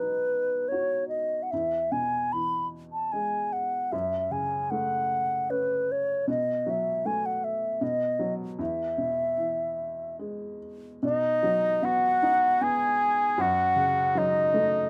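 Tender and pastoral, this Celtic slow air at 76 BPM in 3/4 unfolds in rubato, with a pure, woody baroque flute carrying the melody up front with vibrato over a muted, boxy felt piano whose action noise is audible, joined at 11.0 seconds by a warm oboe second line, in a dry, rough home demo cut from a longer piece.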